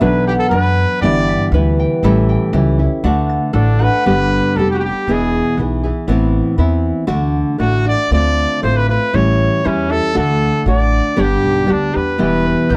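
A dry, close 1970s-style studio sound with light reverb frames this proud, romantic mariachi excerpt, where a bright, distant classical-style trumpet carries the melody in separate phrases, a dark, woody, fingerpicked nylon-string guitar and a pizzicato upright bass with steel strings hold the accompaniment throughout, and a ringing concert harp plays arpeggios until 5.7 seconds before returning at 12.2 seconds.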